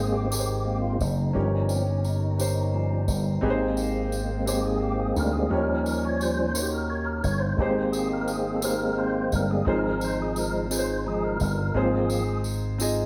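A fat, clean tonewheel organ leads this slow gospel passage in Ab major from the first moment, sounding together with a dark, mellow concert grand piano, a very quiet, distant French horn section holding sustained chords, and a punchy slap bass shaped by an envelope filter. The mood is soulful and reverent, moving at 58 BPM in a straight 6/8 feel. The organ takes the solo role and sits up front, its chorus vibrato and slow rotary speaker giving it a gently churning shimmer before it drops out at 12.4 seconds. Beneath it, the piano's smooth, vintage tone carries audible action noise and deep bass, while the horns add a roomy, classical-style ensemble glow with light vibrato. The bright, amped bass stays direct and forward, and a jingly, close and dry tambourine enters at 0.3 seconds. The harmony moves through Abmaj7, Eb7/G, Eb7 and Fm7/Ab before settling on Ab6, all within a moderate stone room reverb that gives this cut from a longer piece the feel of a band playing live together.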